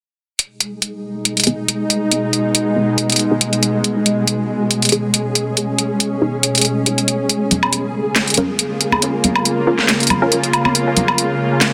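A garage drum kit opens this heavy, meditative deep dubstep excerpt at 0.4 s, its cracking snare, hi-hat and woodblock sitting up front in a half-time feel with a light swing. A grainy, flickering granular texture soon follows, and a nasal, string-like bowed drone arrives up front, holding tense sustained chords with vibrato and its own reverb. Muted, warbling dub chord stabs with a sub octave and a mellow chorus sit in the background, decaying into dub echo while a filter sweeps across them. The harmony moves from G# minor to A# minor, and bright, saturated congas played with soft hands enter at 7.5 s, also trailing dub echo. The mix has light reverb and a dense, heavily limited modern master.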